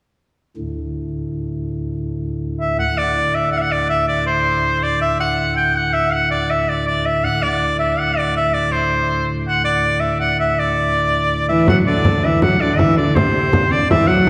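Festive and ancient, this medieval dance in D mixolydian moves at 162 BPM in a straight 3/4, opening with a soft pipe organ drone on flute stops with chiff and tremulant at 0.6 seconds, before a bright, distant folk-style shawm with light vibrato takes the solo melody up front at 2.6 seconds. A rich, biting, woody bowed viola da gamba joins on a second line at 11.5 seconds, followed by a deep, close frame drum played with soft hands at 11.7 seconds, all carried by a wet church reverb in this fragment of a longer piece.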